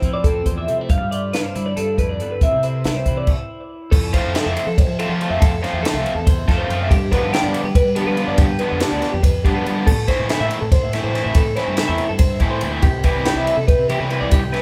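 Driving along at 282 BPM in eighths with a straight 7/8 pulse, this wistful, bright cut from a longer math rock and midwest emo piece sets a twangy twelve-string guitar chording through spring reverb against a second bright twelve-string playing high arpeggios with phaser and analog delay. A round, fuzzed fingered bass and a dry, up-front cocktail kit with a high-tuned snare and punchy kick carry the band through Fmaj7, G9 and C before a stop at 3.3 seconds, after which a double-tracked, cranked stack guitar riff enters at 4.1 seconds. The accompanying twelve-string stops at 4.8 seconds, and the rest moves through G7, Am7 and Cmaj7, captured live in one room with light reverb.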